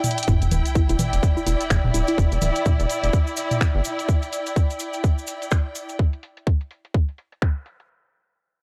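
At the start a break with a drum fill brings in the garage kit's snaps and filtered bright hats, a grainy cabasa, tape-warm electronic toms and congas, and a biting, bowed string section pumping against the kick, setting a quirky, hypnotic minimal techno groove at 126 BPM in E minor with a swung sixteenth feel. From 0.3 seconds a tight, up-front electronic kick and a rubbery, hollow square bass arrive over an Em7 chord, joined by a woody, round mallet-like pluck with chorus and tape echo sitting in the background and a sub drop impact. A filter sweep runs over the drums through to 7.9 seconds, all caught in a dry, gritty cassette sound with little reverb.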